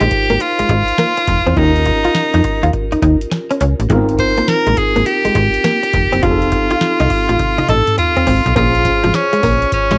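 This slick, punchy new jack swing excerpt opens with all five parts at once, led by an edgy, forceful tenor saxophone that sits close-miked and up front, singing the melody with vibrato in a pop style. Beneath it, a worn, slightly out-of-tune tine electric piano adds lightly overdriven accompaniment, while a clean, direct-recorded electric guitar plays a compressed, picked riff through an ensemble chorus. A slap-like FM bass with a snappy, metallic attack anchors the low end, and a booming analog drum machine supplies a dry, deep kick, tonal snare, metallic hats, tambourine and toms. The groove moves at 103 BPM in 4/4 with a swung sixteenth-note feel, cycling through Ab6, Eb7 and F7 chords in Bb dorian before a drum fill at 7.4 seconds leads into a new section on Bbm9 at 8.6 seconds. Cassette tape colours the saxophone, electric piano, guitar and drums, and a moderate studio reverb gives the home-recorded mix a compact sense of space.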